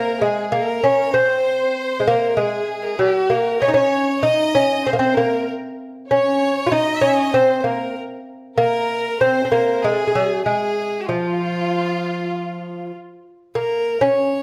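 Persian modal ensemble music in F dastgah shur, this short passage cut from a longer piece moves at 97 BPM in a straight 4/4, with a hypnotic, soulful mood. A bright, delicate acoustic lute carries the melody up front, fingerpicked on doubled nylon strings with some courses strung in octaves, sitting in the range from F3 to F4. Alongside it, a single close, clear violin plays a smooth, even second line with vibrato, bowed between F4 and Eb5. A warm, lush studio violin section shares that same second line and register with expressive vibrato, dropping out at 12.9 s while the lute and solo violin continue to 14.4 s. The ensemble sits in a moderate recital hall reverb that gives the strings a gentle sense of space.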